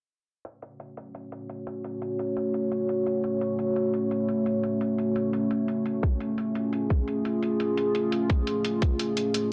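Dark technical drum and bass at 172 BPM in 4/4 with a straight feel, set in F# harmonic minor and resting on an F# minor chord, this short cut from a longer piece feels tense and dark. Electronic hi-hats open at 0.4 seconds, metallic and layered, muffled by low-pass filtering on both the hats and their room sound. A deep, moody analog pad arrives at 1.2 seconds, holding sustained chords between A3 and C#5 with a slow attack and long release; its detuned blend of square, sawtooth and triangle tones over a sub octave is colored by chorus and phaser and pumps against the sidechain, sitting up front. A tight, layered electronic kick enters late at 6.0 seconds, forward in the mix. A filter sweep runs across the drums throughout, and a moderate digital room reverb with a 1.1-second decay frames the dense, heavily limited, low-pass-filtered master.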